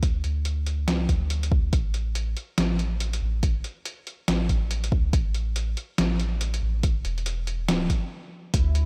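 Meditative and heavy, this short cut from a longer deep dubstep piece moves at 141 BPM in 4/4 with a half-time feel and a swung sixteenth-note lilt. An electronic kick drum sits up front with a layered, tape-tinged depth. A trip hop sampler-style kit adds hi-hat and a medium-tuned snare, its sound pitched down, muffled, compressed and overdriven, and re-recorded in a small room. Alongside them, a soft dub sub bass moving between E1 and D2 offers a round, sustained tone that blends triangle and square waves with a fast attack. The whole passage builds under light reverb before a brief stop at 8.1 seconds, after which the kick falls away at 8.6 seconds while the bass and sampled kit carry on to 8.9 seconds.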